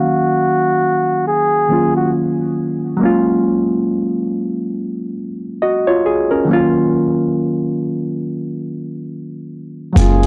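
A breathy, close-miked flugelhorn opens this nostalgic lo-fi hip hop excerpt with a short jazz-style solo of scooped notes, trailed by analog delay, over a reedy, lightly overdriven electric piano heard through its built-in speakers, both parts dulled by a low-pass filter. The piano carries on alone after 2.1 seconds through a long filter sweep as the swung harmony moves from D#m7 to F#maj7 and back, all wrapped in a wet small room and captured on cassette tape. At 10.0 seconds the flugelhorn returns, joined by a gritty, pitched-down boom bap kit with a thumpy kick and hi-hat, a deep, full sine sub bass, and a smooth-topped French horn section with light vibrato.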